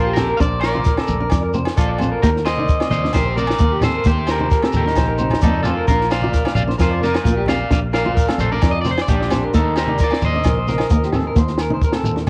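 Highlife guitar band music in Bb major at 131 BPM, sunny and danceable, cut from a longer piece and captured as a home cassette recording with light reverb. An up-front, twangy electric guitar at the edge of break-up carries the melody through spring reverb, while a second, compressed break-up guitar plays arpeggios with spring reverb and a cassette-tape tint, over a dark, round, foam-muted fingered electric bass moving between Bb and Eb chords. From 0.2 seconds a dry compact cocktail drum kit with a high-tuned snare and tight kick enters together with a fingerpicked flamenco guitar with audible finger squeak in the background, ringing agogo bells, a grainy, saturated shekere, and very quiet, distant low-tuned congas played with soft hands.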